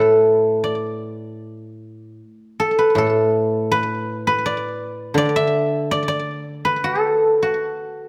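Pastoral and elegant, this short excerpt of Chinese traditional music features a solo guzheng in a free, rubato duple metre. Played with fingerpicks, the acoustic instrument has a mellow, silvery tone whose notes ring out across a range from A2 to E5. A slapback echo shadows the guzheng, which sits up front in the mix. The recording is close and detailed, placed in a lightly reverberant space. After a brief opening passage, the music moves into a new section at 2.2 seconds and continues until the cut at 8.1 seconds.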